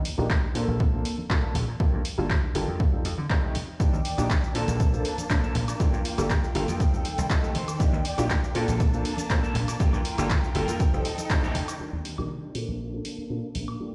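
An up-front electronic kick drives this sunny, joyful filtered disco house excerpt at 120 BPM in Bb major, joined by handclaps, hi-hat, shaker and woodblock from a punchy analog drum machine, very quiet hard-handed tambourine and congas, a bright foam-muted thumbed slap bass, a clear vintage grand piano with phaser, and a twangy, slightly broken-up guitar riff in the background, while a lush bowed string section enters at 3.8 s; bass, piano, guitar and strings all pump with sidechain under a low-pass filter sweep, a clean guitar fill arrives at 6.3 s and a band accent hits at 11.3 s, all ringing through a bare stone room.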